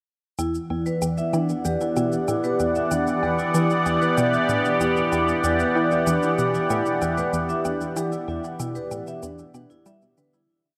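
Bathed in a huge, wet ambient reverb, this hypnotic, mysterious piece of sequencer-driven space music in E minor moves at 95 BPM in a straight 4/4, with a bright, wave-folded resonant pad sweeping through slowly shifting chords from Em7 under chorus and phaser, a detuned sawtooth synth pulsing a tight, driving 7-step riff that drifts against the bar, a metallic, ringing vibraphone played with medium hard mallets tracing a delayed 10-step arpeggio loop, and a light, tape-warm machine pulse of shaker and woodblock, all sounding together from 0.4 seconds before the fade-out that begins at 7.1 seconds and ends at 10.5 seconds.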